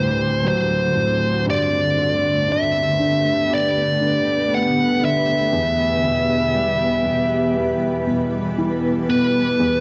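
In a straight, slow 4/4 at 59 BPM, this tender, heartfelt pop ballad excerpt sets a dark, distorted high-gain lead guitar melody up front over a baby grand piano with open, long-sustaining accompaniment and a cloudy, evolving granular pad with its own reverb, all moving through D7, Gadd9 and Em in a small room with light reverb, tuned to A4 = 439 Hz.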